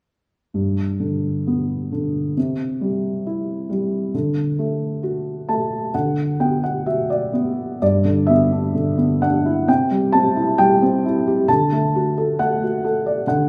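A wet recital-hall reverb surrounds this short cut from a longer piece, with lossy compression artefacts in the sound. It is a tender, calm classical solo for felt-muted upright piano in G major, moving at 67 BPM in 4/4 with a rubato feel, its muted, dark and intimate tone placed up front across a range from G2 to A5. A piano fill from 5.0 to 7.8 seconds leads into a second section that runs to 13.5 seconds, with harmony moving through G, C and D.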